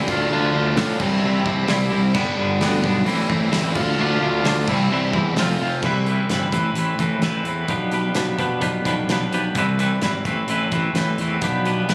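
A loose, straight 4/4 beat from a dark-cymbaled indie rock kit with a punchy kick and pumping room sound drives this wistful, jangly excerpt, where a bright, twangy clean guitar with tremolo and a growly fuzz bass run throughout, while a crunchy overdriven guitar treated with chorus and tape echo plays its riff up front until 5.8 seconds, when the chords turn to lusher Cmaj7 and Amadd9 colours, all set in a light reverb with a phone-in-the-room rawness.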